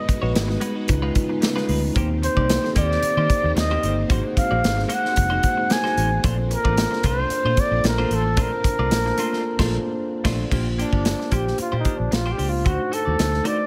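A lightly swung 16th-note groove at 112 BPM in 4/4 drives this upbeat, urban slice of polished 1980s jazz-funk pop in Bb major, where a breathy, whispered flugelhorn carries the melody up front over mellow tine electric piano with subtle chorus, a clean semi-hollow guitar riff through analog chorus, a dark, round foam-muted fingered bass, punchy drums with bright cymbals and gated reverb, and a faint shimmering string machine that holds sustained violin chords until 10.5 seconds, when a band accent gives way to a flugelhorn solo over chords like Bb69 and D7b9.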